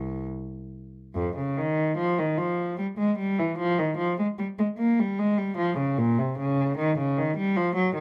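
A single bowed cello carries this brief classical fragment, a baroque-style suite movement for the unaccompanied instrument, set in F minor and cut from a longer piece. Its gut-string tone is dark and reedy with a smooth top, played in a period style by one player who sits up front in the sound. The mood is solemn and introspective, moving in 3/4 at roughly 65-77 BPM with a flexible, rubato feel that lets the pulse breathe. The cello stays in its low and middle register, from C2 up to Bb3, and plays alone for the full 8.0 seconds. A light reverb gives the close, intimate sound a touch of space.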